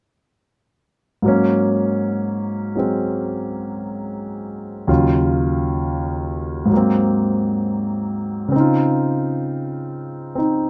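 Closely miked and nearly dry, this brief, playful and relaxed solo jazz passage features an intimate grand piano, up front with natural tone, long sustain and audible action noise, swinging easily in 4/4 from 1.2 to 10.7 seconds through Ab9sus4, Ebm9, Ab9 and Dbmaj9 harmonies.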